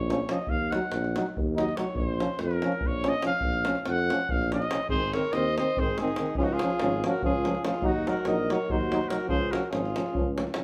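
This Balkan brass band piece in Bb minor moves in a brisk 7/8 at 287 eighth-note beats per minute with a straight feel, and its mood is bittersweet yet fiery. A vintage-toned trumpet carries the melody up front and plays solo for the opening 4.9 seconds over a mellow, smooth-topped tuba bass, a clear trombone and a warm euphonium. A deep, compressed and saturated davul drives the rhythm. At 4.9 seconds a bright alto saxophone enters with a second line as the harmony shifts from Ebm and Bbm toward Ab, Db and back through Ebm. The brass play in a classical style, with light vibrato on the trombone, euphonium and tuba, and the band sounds as if it is playing live together in one room with moderate large-studio reverb. The clip is cut from a longer piece.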